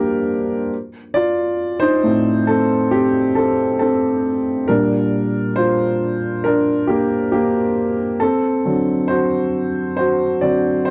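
A warm baby grand piano plays alone from the very start, carrying a tender, hopeful pop passage in Bb major at an unhurried 68 BPM in a straight 4/4. The piano's tone is open, with long sustain and an up-front placement that keeps it close to the listener, ranging from A2 up to D5. The harmony moves from Gm7 to F at 0.7 seconds, settles on Bb6 at 4.7 seconds, and reaches D7 at 8.2 seconds. Light reverb adds a touch of air around the instrument within a dry, close studio sound in a 1970s style. Cut from a longer piece, the recording runs just under eleven seconds.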